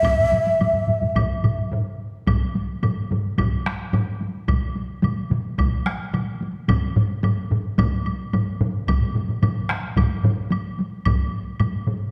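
A dark, roomy sound with a lush scoring-stage reverb frames this driving, powerful Japanese taiko ensemble piece, cut from a longer work and set in 4/4 around 109 BPM. A breathy, hollow bamboo shakuhachi opens up front with vibrato and tongued chiff, holding its melody only until 1.7 s, when a brief stop lasts until 2.3 s. Four taiko parts play from the very start alongside a woody, close woodblock and carry on past the stop, with hard and heavy sticks ranging from close, dry strikes and small-room hits up front to a more distant layer and one compressed, saturated drum, while the tempo gradually speeds up throughout.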